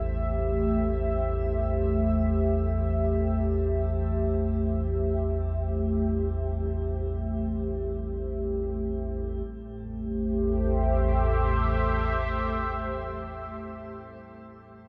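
A cavernous, wet cathedral reverb with a long 6.7-second decay surrounds this unsettling dark ambient drone in A minor, heard as a fragment cut from a longer piece. It moves in free time and rests on a single A minor chord. Far below, a deep, rumbling drone sits up front with a warbling, detuned, vintage character and lush chorus, its dark, ominous body sustained until 13.8 seconds. Above it, a sweeping, resonant pad holds evolving sustained chords, its detuned sawtooth and sub-octave layers shaped by a filter swell, carrying shimmer reverb and chorus through to 14.4 seconds. A barely audible quartz singing bowl adds a pure, ringing, meditative shimmer with slow beating, struck with a wooden striker and close-miked and dry, before it stops at 9.5 seconds and leaves the pad and drone to close the passage.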